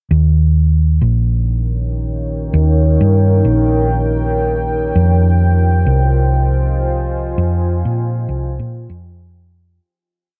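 This ambient dub piece moves at 99 BPM in 4/4, with a 16th-note swing of 57% giving its groove a loose, lilting feel from the opening at 0.1 seconds. A hollow-body, short-scale fingered electric bass carries the low end, sounding round, punchy and amped through tube saturation, with long gliding notes sitting up front in the mix. At 1.6 seconds a deep, dark pad enters with sustained chords, its detuned sawtooth unison and sine sub octave softened by a slow attack, long release, chorus, built-in reverb and a cassette tape tint. The harmony shifts slowly from Eb7 to Fm7 at 5.0 seconds, settling the spacious, hazy mood in F minor. The whole piece is a short home cassette recording in a dry room, and it fades out from 6.6 seconds to its close.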